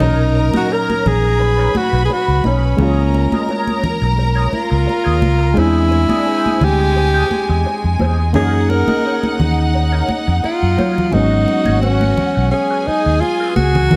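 A breathy, close-miked tenor saxophone carries the melody from the first second of this lush 1970s-style soul excerpt at 86 BPM in G# dorian, with scooped notes and light vibrato over a round, punchy fingered electric bass and a reedy, lightly overdriven electric piano bathed in spring reverb. A bowed violin section adds a rich second line, while high-tuned congas and a lo-fi electric guitar riff with wah and chorus sit in the background, its slightly broken-up tone coming through a small old amp. The smooth, silky groove swings on the 16ths, moving from Bmaj9 through E7alt to F#6 before shifting to G#m7 as a new section begins at 11.1 seconds, framed by a dark, small-room production.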